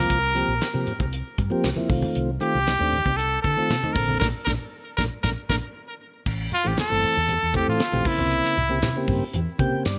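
A bright, punchy trumpet leads this funky, soaring excerpt of electric jazz fusion in C mixolydian at 117 BPM in a straight 4/4, carrying the melody up front with light vibrato, forceful jazz phrasing and a touch of delay. Beneath it a mellow, flute-like tonewheel organ with audible key click turns through a slow rotary speaker, while a dark, round fretless electric bass with a hollow-body character sits under a lush chorus. A damped 70s drum kit plays dry and mid-forward, with a fat snare, tight kick, hi-hat and crash cymbal, and low-tuned congas with a thick skin sit very quietly in the background. The harmony moves from C7sus4 through F7/C to Bbmaj7, where a band accent arrives at 4.2 seconds and a drum fill leads into the next section at 6.3 seconds. There the trumpet takes a solo over Am7 and C7b9, and the organ adds a fill at 9.3 seconds, all set in light small-room reverb with a bright 1980s-style digital sheen.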